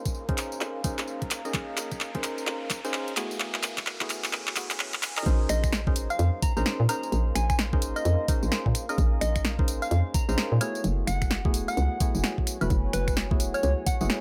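UK garage in a two-step style at 129 BPM in Bb minor, bouncy and soulful, with swung sixteenths. A groove of overdriven, knocking kick, a punchy analog drum machine of snare, claps, finger snaps, hats, tambourine and woodblock, and an up-front FM bass with sidechain pumping runs from the start. Over it, a build-up with a drum fill, a background riser and filter sweeps on the hollow, percussive organ stabs drops at 5.3 seconds. Beneath, a deep, detuned ambient pad broods in the background, while from 5.5 seconds a gentle, warbling keys-like lead with chorus and delay sings over the Bbm11 to Gbm11 changes.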